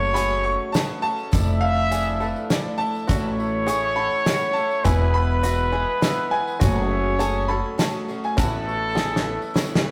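A dark, smooth-topped trumpet with light vibrato carries a second line up front over a brilliant upright piano melody in this anthemic, nostalgic indie folk piece at 102 BPM in 3/4 and A major, joined by a shimmering octave-doubled twelve-string guitar, a clear concert grand with audible action noise, twangy fingerpicked banjo arpeggios, a woody, growly pizzicato upright bass, a tight country drum kit that plays a fill from 9.0 s, and a jingly tambourine in the background, captured as a rough rehearsal-room recording with tube saturation and wet stone-room reverb.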